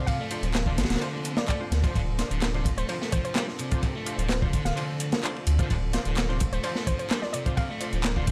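A crunchy, gritty breakbeat kit with a tight kick, medium-tuned snare and dark ride cymbal sits up front in a straight 4/4, layered with an overdriven house kit of handclaps and bright hi-hats, driving this funky, raw breakbeat piece over a single Dm7 chord. A thick, saturated sub bass enters at 0.4 seconds beneath a sludgy distorted guitar riff with tape echo, while punchy orchestra-hit-like synth stabs with ring modulation and a filter sweep cut through. A hollow, bouncy square pluck carries the melody with chorus and an old record sound, and a lush, warbling unison pad holds sustained chords in the background with sidechain pumping, the mix steeped in echo and small room ambience.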